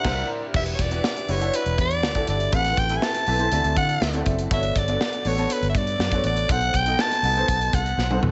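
Upbeat and glossy, this polished 1980s jazz-funk pop cut at 121 BPM opens on a band accent as a raspy, growling soprano saxophone carries the melody up front over a warm baby grand piano touched with ensemble chorus, a dark, round, foam-muted fingered electric bass, and a modern studio drum kit with a punchy kick and gated reverb, closing on a drum fill at 8.0 seconds.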